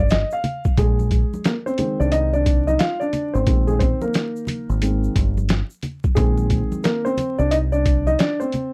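A dark, mellow concert grand piano and a round, dark fingered electric bass open this smooth jazz-hop excerpt together, with a boom bap sampler-style drum kit and a tube shaker with congas arriving almost at once. The piano begins on a rootless suspended chord, then from 0.8 seconds takes a solo over a suspended ninth harmony, its vintage tone carrying deep lows and a short sustain. Underneath, the bass sits up front with a direct, amped sound until it drops out at 8.1 seconds. The drums swing on the sixteenths, sounding compressed, pitched down and gritty, with a thumpy kick, a medium-tuned snare, hi-hat and a tape-warm character. The shaker and hard-hand congas stay low in the mix, acoustic and close. The excerpt has a dry, close 1970s-style studio sound with little reverb and a layer of vinyl crackle.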